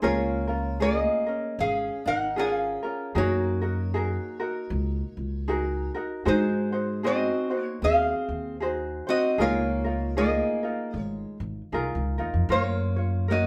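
A metal-body resonator slide guitar carries the melody up front, its mellow, nasal tone played with fingerpicks and a slide over a dreamy, sunny Hawaiian groove at 77 BPM in 4/4 with a gentle swing on the eighth notes. Beneath it, a picked steel-string acoustic guitar adds a bright second line in its middle register, while a fingerpicked ukulele supplies light, up-front accompaniment. A plucked upright bass with steel strings anchors the low end with a woody, dark sound. In Db major, the harmony moves through Db6, Gb69, Ab7 and Db69 before arriving at Gbmaj7 near 12.5 seconds. All four players sound together from start to finish of this 13.5-second cut from a longer piece, captured live in one room with moderate studio reverb.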